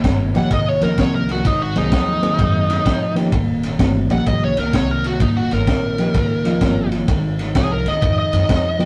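A swung shuffle drives this swaggering, rollicking electric blues snippet, where a crunchy, gritty breakbeat kit with a tight kick, high-tuned snare and dark ride sits up front beside a thumpy, woody pizzicato upright bass and a slightly broken-up riff guitar through a small old amp, while a reedy, worn electric piano with fast tremolo joins at 0.3 seconds and a smooth overdriven lead guitar with slapback echo takes a bright solo from 0.4 seconds, all captured in a rough rehearsal-room sound with tube saturation.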